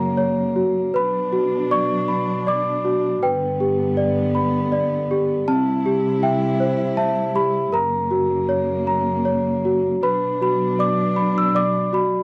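Wistful and gentle, this short fragment of a children's lullaby sways in 3/4 at 79 BPM, with a bell-like, delicate celesta carrying the melody up front from the start. Beneath it, a lush studio string section holds sustained bowed chords with vibrato, both parts playing through to 12.2 seconds as the music moves into a new section at 10.0 seconds. The close, dry 1970s-style studio sound carries light reverb.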